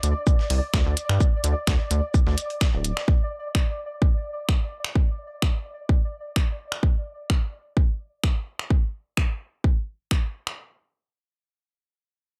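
A dry, close-sounding cut from a longer minimal techno track, sparse and hypnotic at 128 BPM in 4/4 with a light 16th-note swing. A clicky minimal kit of finger snaps and hi-hat, heard in a large room, runs from the start, and a punchy, up-front electronic kick drops in at 0.3 s and runs through. A rubbery, bouncy square bass with a resonant filter pluck pumps against the kick before stopping at 2.9 s, while a gritty, compressed sampler-style kit with a fat snare, shaker and filtered hats sits in the background and a detuned, chorused gated texture pulses on a high D until 6.8 s.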